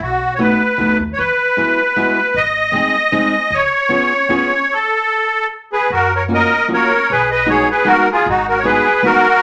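A nostalgic, bittersweet musette waltz excerpt at 153 BPM in a swung, rubato 3/4, where a reedy, shimmering musette accordion carries the melody up front over a full-bodied fingerpicked dreadnought guitar and a woody, thumpy pizzicato upright bass, all in a wet studio reverb, with a full stop at 4.7 seconds before the music resumes at 5.9 seconds and settles into F# major.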